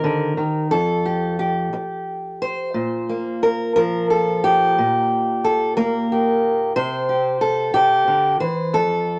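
In a loose, rubato 6/8 at 60 BPM, this gentle, pastoral folk piece in Bb major, tuned slightly below standard pitch, features a solo fingerpicked steel-string acoustic guitar ranging from F2 to C5. The guitar sits up front with a warm, concert tone and audible finger squeaks, set in a moderate studio reverb. A brief opening moves from Eb to Fadd9 before a new passage at 2.7 s settles through Bb5, Gm/Bb and Cadd9 in this short cut from a longer piece.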